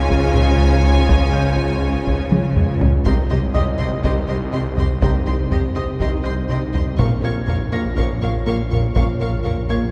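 Solo taiko drums struck with hard sticks sit close and dry beneath this brooding, vast hybrid orchestral and electronic film cue at 122 BPM in 4/4, cut from a longer piece, with a drum fill at 2.3 to 3.1 seconds marking the move from Db to Cm and later Bbm. Lush bowed violins carry a focused, vibrato-rich melody between Ab5 and Db6 over a smoother second violin line, while violas with soft attacks and portamento, rich cellos and woody double basses fill the lower strings. A menacing, saturated detuned saw bass with a filter swell shares the Bb1 to Db2 register with the double basses, and a rubbery, hollow square bass plays a bouncy, wave-folded riff from 0.1 seconds. Mellow, distant French horns and tight trombones hold very quiet sustained chords until 9.1 seconds, beside an ethereal, airy pad with a moving notch and chorus. A soft, felt-muted upright piano adds intimate high texture, and the whole ensemble is bathed in a church reverb with a 3.2-second decay.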